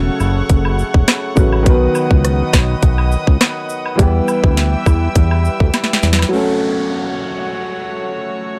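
Hypnotic and tough, this 103 BPM dancehall excerpt in F# phrygian rides a thick, detuned sawtooth bass and a tight, up-front electronic drum kit with a sharp snare and rim clicks, while a boxy grand piano comps over F#m, B and Em, distant reedy chamber strings pump beneath, cabasa and woodblock sit in the background, and after a drum fill at 5.7 seconds the groove drops out at 6.3 seconds for an electronic downlifter under lingering piano and strings in a dry, gritty mix.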